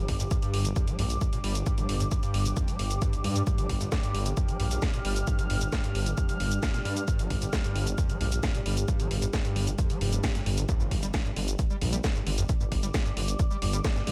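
Driving, hypnotic peak-time techno at 133 BPM, cut from a longer piece, where a punchy, up-front analog kick and a layered kit of cracking snare, warm hats and shaker drive a thick, menacing detuned saw bass and a squelchy, gritty acid riff with lush chorus, both pumping under sidechain, while a nostalgic lo-fi tape-like pad warbles above and an eerie metallic drone hums very quietly until the drop at 10.7 seconds, marked by a faint electronic impact.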